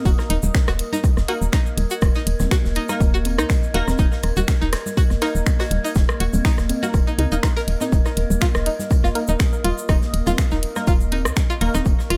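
A dry, close-sounding mix frames this quirky, sparse minimal techno cut, taken from a longer piece and moving at 122 BPM in 4/4 with a light 16th-note swing. Up front sit a punchy analog kick, re-recorded in a small room, and a woody, round FM bass with a soft, dark tone, the bass breathing with sidechain pumping. A twangy, string-like resonator pluck carries the riff, its bright, warbling tone run through chorus, phaser, vintage 12-bit sampler grit and digital delay. Alongside it, a nostalgic lo-fi pad built from wave-folded square, triangle and sine tones holds a slow, sustained texture with chorus and built-in reverb, also pumping with the sidechain. At 1.3 s a crisp, detuned wavetable chord stab enters with delay, dropping out at 11.7 s. The garage kit adds warm hi-hats and finger snaps, while further back sit tape-tinged electronic rim clicks and congas, a grainy egg shaker, and a hall-toned tambourine with a fat snare.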